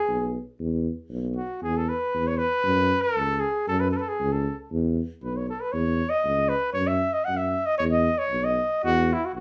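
The sound is set in a small, reverberant room, heard from a step back, though both horns sit up front in the balance. It is a short cut from a longer Balkan folk piece in E major at 117 BPM in a straight 2/4, with a wild, virtuosic mood. A cornet carries the melody, mellow and close-miked with a soft attack, playing in a classical style between E4 and F#5 and taking a solo from 0.6 to 8.8 seconds. Beneath it a tuba holds the bass from B1 to F#2, its tone smooth on top with a light vibrato and a gentle onset, also in a classical manner. The harmony rests mostly on E5 and F#5 power chords, with a rootless C#m add11 over F# colouring the passage near the end.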